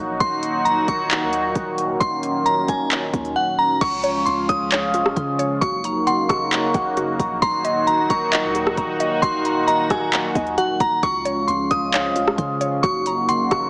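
A glassy, crystalline synth bell carries the melody up front with chorus and tape echo in this floating, blissful atmospheric cloud-rap hip hop at 133 BPM in a half-time feel, over a bright, detuned sawtooth pad holding lush chorused chords through Ebm, Dbmaj7 and Gb6, a deep, round 808-style bass sitting in the background, and a smooth electronic R&B drum kit of soft kick, crisp hi-hats, handclaps, rim clicks and crash with an overdriven edge that drops out briefly at 3.4 seconds before a woody, phased mallet-like synth pluck joins with arpeggios at 3.8 seconds, the mix set in light digital reverb with a heavily compressed, small-speaker radio sound.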